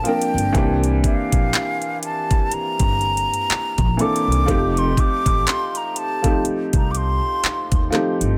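A breathy, hollow flute opens this short, late-night contemporary R&B fragment at 0.0 seconds, its close-miked tone carrying vibrato and tongued notes through a tape echo. Alongside it from the start, a felt-muted upright piano plays soft, intimate accompaniment up front, while a pizzicato upright bass adds a woody, growly low end with steel-string bite. An electronic, produced drum kit arrives at 0.1 seconds with a knocking kick, metallic hi-hats and handclaps sitting up front in the mix. The tempo is a slow 61 BPM in 4/4 with a swung sixteenth-note feel, and the harmony in C dorian moves from Bbmaj7 to C7 and then to F7 at 4.5 seconds. A small room ambience surrounds the players, and the longing mood holds until the flute stops at 7.9 seconds, leaving piano, bass and drums to finish the fragment at 8.4 seconds.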